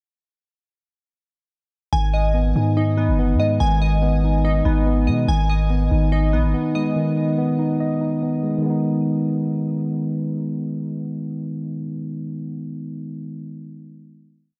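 This is a short drill-style hip hop piece in a half-time feel, ominous and tense, built around a breakdown that settles into a held final chord at 8.6 seconds. A mellow, clean tine electric piano sits up front and carries the accompaniment with a rising and falling arpeggio in eighths, repeated like a sampled loop, and it rings on until 14.5 seconds. Above it, glassy digital keys with a sine-like tone, a filter sweep, chorus and tape echo play a bright falling arpeggio in eighths, also looped, with fast attacks that then decay. A deep 808-style bass lays down long sub-bass notes with pitch slides, up front and sustained before it drops away at 6.5 seconds. The production is dark, with light reverb and a digital ambience around the parts.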